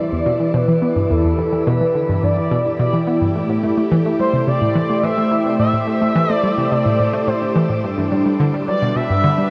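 A round, detuned analog pluck riff, a swirling phased pad and a smooth portamento lead with vibrato all sound together from the start of this mysterious, expansive ambient space-music excerpt, moving at a straight 107 BPM in 4/4. The chorused, delayed pluck sits slightly forward with a noisy, filter-swept edge and cassette-tape grit, while the full-bodied, wave-folded pad sustains Em7, Am7 and then Gmaj7 at 7.8 seconds under the mellow lead melody. A wet shimmer reverb with an 8.0-second tail and a cassette-tape colour wrap the whole passage in a vast, hazy space.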